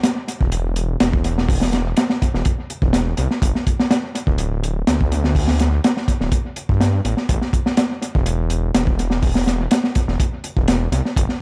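A crunchy breakbeat drum kit drives this swaggering, raw breaks excerpt at 124 BPM, its gritty, saturated hi-hat, tight kick and high-tuned snare sitting up front with a dark, rolled-off top and an analog delay. From 0.4 seconds a thick, menacing detuned saw bass joins, beating and sustained with a fast attack, moving between D1 and G2. Light reverb and an echo-heavy mix give the short cut a sense of space.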